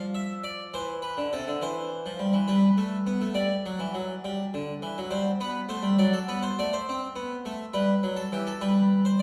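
Steady 12/8 time at 68 BPM, counted in dotted quarters, sets a straight, buoyant pulse for this joyful, lively classical piece: a baroque-style two-part invention for solo harpsichord. The harpsichord plays alone for the full 9.2 seconds, its two voices spanning C3 to E5. Its plucked, Italian-style tone is full-bodied, with the added richness of two sets of strings. The instrument itself sounds close-miked, dry and up front, while the recital hall around it lends a wet reverb that places the listener further back in the room. The harmony moves from G7 to C, G, Am7, D7 and back to G in this short cut from a longer piece.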